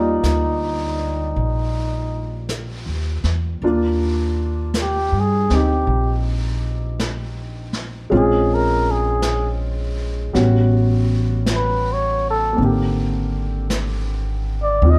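A dark, lightly reverberant production frames this tender, intimate jazz ballad excerpt in Eb major, unfolding at a slow 54 BPM with a swung 4/4 feel. A cup-muted trumpet carries the melody up front, its veiled, breathy tone edged with rasp, growl and light vibrato, and from 3.6 seconds it takes a solo over chords including Ebmaj7, Bbm9, A13 and Abmaj9#11. A warm concert grand with audible action noise and deep bass supplies the accompaniment, a woody pizzicato upright bass sits close, and a distant, roomy brush kit enters at 0.2 seconds on snare and hi-hat.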